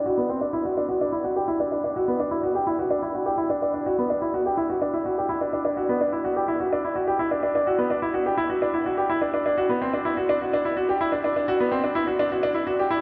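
Melancholic and cinematic, this short electronica fragment, cut from a longer piece, rests entirely on a solo grand piano heard across its full 13.0 seconds. The piano sits up front with a clear, natural tone, its line staying within a narrow middle register, and a delay trails its notes. Around it, the mix is soaked in the long wash of a cathedral reverb, giving the sound a dreamy, suspended quality. A low-pass filter shapes the overall mix, and a filter sweep runs from start to finish. The pulse is straight and steady in four, lending the lone instrument a quiet electronic framing.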